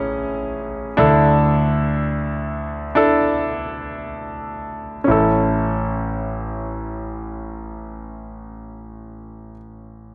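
Emotional and heartfelt, this short pop fragment in free time and A major features a bright, polished concert grand piano playing an up-front accompaniment from A1 to A4 with deep bass and short sustain, moving from A to Dsus2 while slowing down through the opening 5.1 seconds before returning to A in the second section, all set in light reverb and studio ambience within a dark, warm production.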